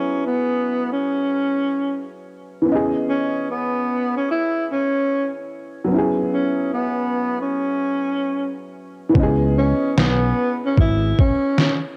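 This lo-fi hip hop excerpt feels melancholic and hazy, with a relaxed swing on the sixteenths. A breathy tenor saxophone carries the melody from the start, its subtoned, whispered jazz tone marked by vibrato, soft attacks and scooped notes, sitting up front yet sounding distant and roomy. Beneath it a dark upright piano plays the accompaniment, worn, woody and slightly detuned, with audible action noise and a boxy, short sustain; both saxophone and piano are low-pass filtered and coloured by cassette tape. At 9.2 seconds a gritty, compressed, pitched-down trip hop sampler-style kit arrives with a thumpy kick and medium-tuned snare, alongside a round, direct fingered electric bass up front that drops out at 11.1 seconds. The chords move between F#9sus4 and C#m7 under a moderate spring reverb, giving this home cassette recording an intimate, mellow glow.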